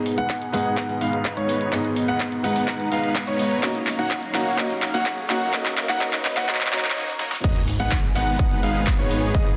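A soft, felt-muted upright piano and a lush pad treated with chorus and phaser open this uplifting, euphoric festival progressive house excerpt. They are soon joined by a punchy, layered kick, an overdriven, up-front dance kit with a huge snare, handclaps, hi-hat and crash, an intimate concert grand piano playing arpeggios, and a thick, compressed supersaw riff, with the pianos, pad and supersaw all pumping to the sidechain. Through the build-up a filter sweep works on the supersaw and drum fills gather over a very quiet riser and sub drop, until a short break at 7.0 s gives way to the drop at 7.4 s, where the upright piano falls away and a menacing, detuned saw bass takes the low end.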